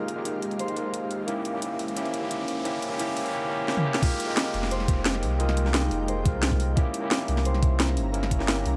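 A lightly reverberant, rolling and dreamy liquid drum and bass excerpt at 175 BPM in F minor, where a barky, overdriven tine electric piano and ringing fingerpicked harp build under filter sweeps over an ethereal detuned pad, a cracking-snare garage kit and background riser, until a drum fill drops at 4.0 seconds into a thumpy, gritty kick and a round sine sub bass entering at 4.5 seconds, moving between Fm11 and C7b9.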